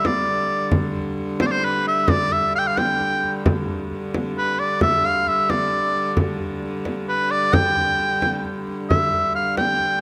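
A clear, punchy shawm leads this festive, ancient-sounding medieval dance, playing up front as a folk-style solo with vibrato, scooped notes and a smooth top across the range from B4 to G5. Beneath it, a rich hurdy-gurdy holds a biting, nasal drone with an airy bow, while a warm, close, dry frame drum plays along in 6/8 at 88 BPM in dotted quarters. The G mixolydian tune sits in a moderate concert hall reverb, and a new section begins at 8.9 seconds just before this short cut from a longer piece ends.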